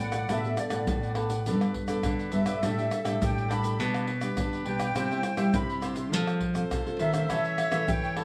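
A small room's moderate studio ambience frames this short, nostalgic cut from a longer samba and choro piece, moving at 103 BPM in a straight 4/4 in G major. A reedy musette accordion carries the melody from the start, its shimmering tuning and boxy character set in plate reverb. Beneath it, a clear, distant clarinet sings a roomy second line in classical style. A bright, crisp picked cavaquinho and an up-front, thumb-plucked nylon-string guitar share the accompaniment, while a second classical nylon-string guitar, also thumb-plucked, holds down the bass. From 0.1 seconds, tube shaker, pandeiro, tamborim and a deep surdo add close, dry percussion played with hard hands. The harmony drifts through Gadd9, C, F and A/E, giving the passage its bittersweet color.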